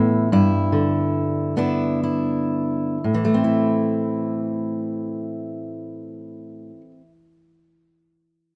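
Lightly reverberant and intimate, this brief folk fragment cut from a longer piece features a solo fingerpicked steel-string acoustic guitar, dark and woody with the character of old strings, set up front and playing from 0.0 to 7.1 seconds in a wistful A minor 3/4 time at 56-79 BPM, slowing down over the first 3.0 seconds as it moves from a G6 chord to A minor.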